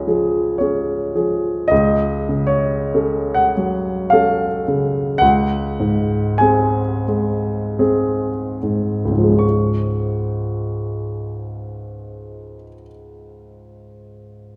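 A warm baby grand piano opens this short excerpt alone, its polished tone sitting present and up front as it begins a serene, tender Romantic nocturne in D-flat major. The music moves in a slow, rubato 3/4, drifting between roughly 33 and 57 BPM, and it gradually slows from the start until about 9.4 seconds. The piano spans from the low D-flat2 to D-flat6, and its tuning sits at A4 = 442 Hz. The harmony moves from D-flat to G-flat minor over a D-flat bass, then to A-flat seventh over D-flat, before settling back on D-flat at 9.4 seconds. A wet scoring-stage reverb with a 1.5-second decay surrounds the instrument, and the passage is cut from a longer piece, ending at 14.6 seconds.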